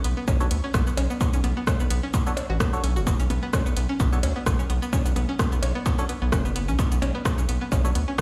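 A round, deep analog bass sits up front from the first moment, pumping against the beat, while a twangy, string-like resonator pluck traces a short riff in a chorused haze with digital delay trailing behind it. A dry analog drum machine enters with them, its cabasa, hi-hat and rim click roughened by overdrive in a small room. At 0.3 seconds a punchy, overdriven electronic kick arrives up front, joined by tape-tinged percussion blips that echo in the background. From 0.4 seconds a hollow, nasal organ stab adds mellow, decaying hits, chorused and delayed. This cool, sparse minimal techno fragment holds a single minor chord throughout, heard as if played on a big sound system in a bare stone room.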